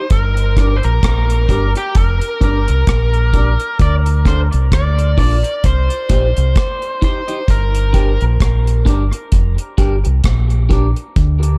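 A slow, swung 65 BPM dub reggae groove in G minor is anchored by a dry, up-front drum kit of tight kick, hi-hat and rim click and a deep, round, punchy fingered electric bass, moving through Gm, Dm and Cm before returning to Gm. From 0.6 seconds, a twangy, slightly broken-up picked electric guitar adds compressed accompaniment through phaser and dub echo. A biting, overdriven lead guitar carries the melody through its own dub echo until 8.2 seconds, all set in a dark, spacious, deep-sounding mix with light studio reverb, cut from a longer piece.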